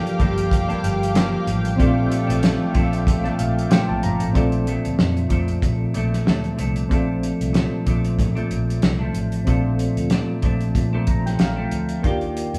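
Indie and bedroom pop with a nostalgic, hazy mood and a light swing, played as a band in one room with a wet reverb. A clean, hollow-bodied semi-hollow electric guitar with vibrato sits up front beside soft, round electric-piano-like synth keys with chorus and tremolo, which add fills at 3.1 and 10.8 seconds, while a lush, detuned, warbling unison pad holds sustained chords until 4.3 seconds. Underneath, a cloth-damped, thuddy drum kit with a fat snare and tight kick pairs with a dark, foam-muted vintage fingered bass.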